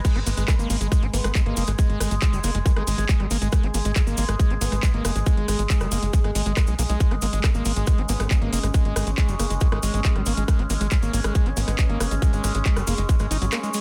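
Driving and alien, this psychedelic trance excerpt runs at 138 BPM in G# minor, built on a tight, up-front electronic kick and a punchy sawtooth sequencer bass with a filter pluck that enters at 0.2 seconds, while a drum kit with metallic hats, handclaps, rim clicks and crash adds layered drive and a grainy cabasa sits in the background. Above them a screaming, squelchy acid riff snarls through distortion, chorus and digital delay, an overtone-sweeping drone sustains chords through phaser and sampler grit, and a very quiet formant-sweep wobble bass joins at 1.1 seconds, with sidechain pumping on the drone and acid line. The kick drops out at 13.5 seconds inside a digital ambience and a dense, heavily limited modern master.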